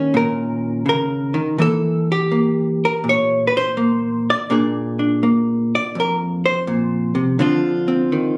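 A lilting swing in 4/4, with eighth notes leaning into a relaxed triplet lilt, sets this short fragment of solo jazz guitar in motion from its first beat. A single hollow-body electric guitar carries the whole piece, its clean, dark, picked tone sitting up front and compressed. The harmony moves through Eb7, Edim, Bb9 and Dm7, with the guitar ranging from low bass notes up into its upper register. The mood is easygoing and swinging, like a late set in an intimate club. Captured on a phone in the room, the sound carries a light club reverb that adds a touch of space around the instrument, and the 8.4-second clip is cut from a longer performance.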